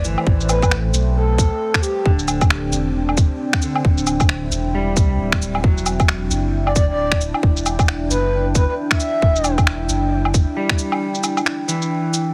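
A tight, layered electronic kick sits up front in this ghostly, rainy future garage excerpt with swung 16ths, joined by a round, sine-based sub bass with tube saturation, a layered bed of electronic cabasa, shaker, woodblock and finger snaps, a slightly broken-up, fingered electric guitar with delay, and a dark, detuned ambient pad with chorus and built-in reverb, the bass, guitar and pad all pumping from sidechain compression, while a soft, breathy flute-like synth lead with vibrato, chorus and delay floats a brief melody over Am9, D9sus4 and Em9 chords, heard at 0.0 and again from 6.7 seconds, all within a dry, heavily compressed radio sound.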